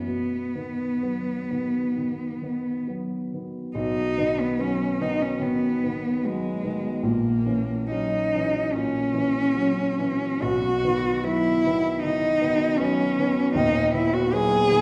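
Lyrical and tender, this romantic classical fragment pairs a solo cello with a concert grand piano in B major, moving in 4/4 at a flexible, rubato pace of about 63-79 BPM. The bowed cello carries the melody throughout, singing in its middle register with vibrato, soft attacks and expressive portamento slides, its close sound placed up front. The piano supports it with an accompaniment that reaches down into a deep bass, also sitting forward in the balance. The harmony rests on B, shifts to F#7/A# at 7.0 seconds, and returns to B before settling on B/D# near the end, while the opening phrase is stated and then taken up again from 3.8 seconds. A wet recital-hall reverb surrounds both instruments, giving the impression of listening from further back in the room.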